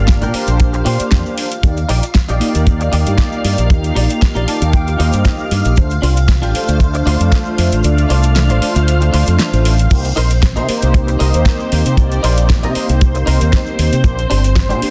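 Sleek and groovy, this nu-disco excerpt rides a swung 4/4 pulse under a dense, heavily limited modern master, with mellow synth brass (round, detuned, with chorus, slapback echo and sidechain pumping) providing accompaniment and a lush vintage string machine holding sustained chords over a progression from Bb69 through Ebmaj7, Dm7 and Cm7. Up front, a bright fingered electric bass with an envelope filter pumps against a tight, dry kick, while a pop drum kit with a fat snare, metallic hats and crash cymbal, plus an egg shaker with group handclap tucked in the background, fills out the groove. A twangy, compressed clean electric guitar plays a riff with ensemble chorus and slapback echo, taking a fill from 4.2 to 5.8 seconds, and the kick drops out between 7.8 and 9.9 seconds.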